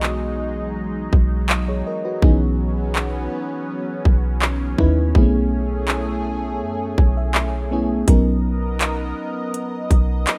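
Contemporary R&B at 82 BPM with a dreamy, tender mood, this short excerpt from a longer piece moves through lush extended chords over a B pedal, from Emaj9/B through C#m9/B and Amaj7/B before resolving to Bmaj7 at 8.1 seconds. A mellow, round FM electric piano with a warbling chorus carries the accompaniment and slips in a fill between 6.6 and 8.1 seconds, while a thick, detuned unison pad with chorus and phaser holds sustained chords beneath it. A deep, boomy 808-style bass and an electronic trap kit with a hard-clipped kick, metallic hi-hats and handclaps sit up front in a dry, rough home-demo mix.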